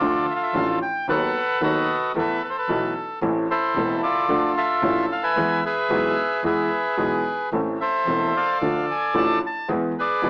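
Rubato in 4/4 around 112 BPM, this tense, melancholic tango excerpt stretches and pulls its pulse across just over ten seconds, tuned slightly sharp to A4 = 445 Hz. Up front, the bandoneon carries the melody with a reedy, full, close-miked voice that sounds dry and warm. Beside it, a concert grand piano plays the accompaniment with a clear, worn tone, deep bass and short sustain, giving the harmony a present, slightly faded edge. Further back, a single bowed double bass holds down the low end with an earthy, biting sound and light vibrato. The chords move through a brooding minor progression, circling from D minor through A minor back to E. A moderate studio reverb frames the trio, while vinyl crackle and an AM radio filter give the whole recording an old, distant patina.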